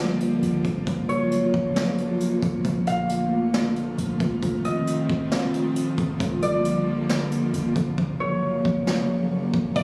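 Floating and dreamy, this atmospheric cloud-rap hip hop piece moves at 135 BPM in a half-time 4/4 feel, cycling through chords such as Gm7, Gbmaj7, Bbmaj7 and F7. An airy, breathy pad with chorus and sidechain pumping sits up front over a deep, clean 808-style sine bass in the background, while a mellow, ringing concert harp carries the melody with delay and a natural brush kit with a boomy kick enters at 0.2 s, its hi-hats falling silent at 8.0 s. A glassy, crystalline wavetable pluck with chorus arrives at 9.8 s, and the recording sounds captured on a phone in a room with a club-like ambience.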